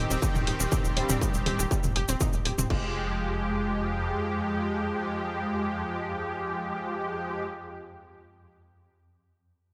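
A bright, 1980s-style digital sheen and a lush hall reverb frame this cinematic, hypnotic melodic techno excerpt in F minor at 121 BPM, where a distorted, up-front electronic kick, a techno kit with crash, toms and warm hats, and a grainy tube shaker drive a full drop until about 2.8 seconds alongside a tight, punchy sawtooth sequencer bass and a lush, detuned unison pluck spinning arpeggios. A juicy, resonant sweep polysynth carries the melody through chorus, tape colour, delay and sidechain pumping, while a bold, brassy analog pad fires nasal stabs up front. From 2.1 seconds a swarming, tense granular drone enters in the background, and as the harmony moves from Cm/Eb to Fmadd9 at 2.7 seconds, the bass drops away at 4.2 seconds, leaving pad, polysynth and drone to pulse onward.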